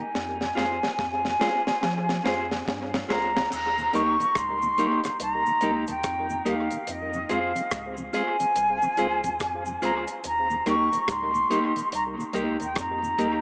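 Drenched in spring reverb and heavy echo with a small-speaker sound, this laid-back, uplifting roots reggae excerpt puts an airy, expressive concert flute with vibrato and tape echo up front on the melody over a swung sixteenth-note feel. A mellow tonewheel organ with key click and slow rotary speaker and a dark, fingered clean electric guitar fill out the accompaniment, while a round sine sub bass and a dry reggae kit with high-tuned snare and tight kick hold the groove after a drum fill that runs to 3.5 seconds. A cabasa joins in the background at 3.5 seconds as the chords move between Fm and Eb.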